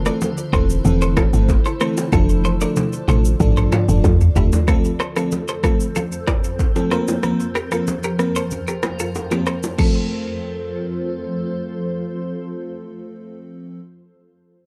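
This afrobeats excerpt moves at 94 BPM in F major, with a romantic, joyful mood and a dark, warm production. An up-front electronic drum kit with a deep kick, rim clicks, shaker, toms and crash cymbal drives the groove, joined by bright, hard-handed bongos and congas. A round, percussive log drum bass anchors the opening until about 4.5 seconds, while a lush, dreamy FM electric piano with a soft pad layer carries the chords throughout. A twangy, clean electric guitar riff with lush chorus and delay sits higher in register, and a cloudy, evolving granular pad blurs into the background with its own reverb. A drum fill runs from 2.1 to 4.7 seconds, and by about 10 seconds the drums, percussion and guitar have dropped out, leaving the piano and pad to ring on over an F chord.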